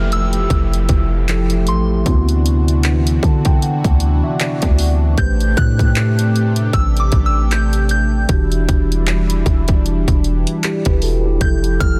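A soft, pure FM synth bell carries the melody with chorus and delay over a mellow tine electric piano, a smooth detuned sawtooth pad with chorus, and a deep, boomy sine 808-style bass. A downlifter sits in the background until 5.2 seconds, while the trap drum kit of hard-clipped kick, tape-toned hi-hat and handclaps sits up front, and the electric piano plays a fill from 2.8 to 5.2 seconds. This sensual, moody contemporary R&B passage has a gentle swing and lush extended chords, with little reverb and a dense, heavily limited modern master, and it is cut from a longer piece.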